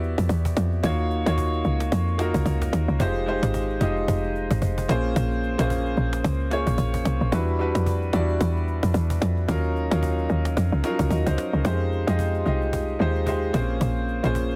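Amapiano at 111 BPM in F phrygian with a swung 16th-note feel, hypnotic and late-night, built on an up-front log drum bass that sounds woody and punchy with a fast attack, a decaying tail and a noise layer, a boxy, deep concert grand piano playing minor-ninth chords with long sustain, and a snappy, close, dry cajon, heard in a small room with a heavily compressed radio sound, the drop running until a new section arrives at 11.6 seconds in this cut from a longer piece.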